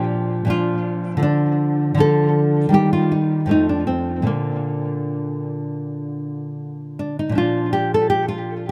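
Close, detailed microphones and light reverb frame a dark, full-bodied nylon-string guitar, placed up front and carrying a touch of tape echo. This brief 8.7-second cut from a longer classical piece is a grave, solemn baroque-style dance in Bb major at 79 BPM in 4/4. It is played with a rubato feel by a single fingerpicked guitar ranging from F2 to A4, moving through Bb, Dm, Eb and F before returning to Bb, with a new section arriving at 7.4 seconds.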